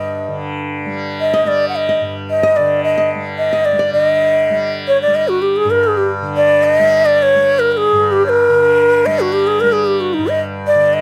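Solemn and meditative, this brief Hindustani excerpt in raga todi on G moves at 111 BPM in a straight 4/4, led by an up-front bansuri whose breathy, hollow bamboo tone carries the melody with vibrato and tongued notes from start to finish. A fingerpicked nylon-string guitar adds a warm classical second line only until 4.0 seconds, while a buzzing, shimmering tanpura holds a bright drone underneath throughout. Close, detailed microphones and light reverb keep the sound intimate, and the music shifts into a new section at 3.9 seconds.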